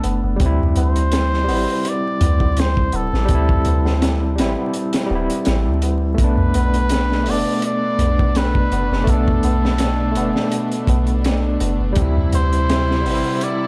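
A veiled, cup-muted trumpet with light vibrato and dub echo carries the melody over a barky, overdriven tine electric piano with tremolo and tape echo in this dark, melancholic 83 BPM trip hop excerpt with a 16th-note swing, anchored by a deep, round 808-style bass, a crunchy, rolled-off breakbeat kit with a high-tuned snare, and ringing low tabla in the background, while a reedy, bowed gut-string section enters at 6.2 s as the harmony moves from D9sus4 to Bm7, all wrapped in a gritty hardware sound with vinyl crackle.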